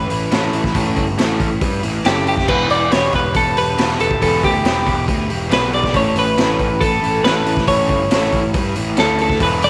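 A clean, compressed twelve-string electric guitar sits up front, carrying the melody between G4 and D5 with a warm picked sound bathed in spring reverb. This restless, bittersweet indie rock passage, cut from a longer piece, moves at 139 BPM in a straight 4/4 over chords of Aadd9, Em and back to Aadd9. Beneath it, a picked electric bass thick with fuzz and overdrive punches out the low end, while an overdriven guitar riff, treated with subtle chorus and tape echo, stays compressed in the background. The raw garage drum kit enters at 0.1 s, up front and gritty, with a boomy kick, medium-tuned snare, hi-hat and crash, its saturated, mid-forward sound carrying a rolled-off top. A lo-fi overdriven garage guitar joins with its own riff at 0.3 s, and the mix sits in a small room with moderate plate reverb.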